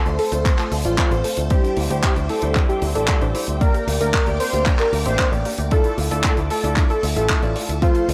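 A dry, gritty hardware recording with light reverb, this short cut from a longer italo disco track moves at a danceable 114 BPM in D minor with a nostalgic feel: a thick, detuned sawtooth unison lead with vibrato carries the melody through cassette tape and tape echo over lush string-machine chords with phaser and ensemble chorus in the background, while a mellow baby grand piano plays stabs with audible action noise, a very quiet unison pluck plays arpeggios, a bright, up-front picked electric bass with an envelope filter holds the low end, a damped 70s kit adds handclaps and hi-hat with small room ambience, and an overdriven, punchy electronic kick joins at 0.5 s.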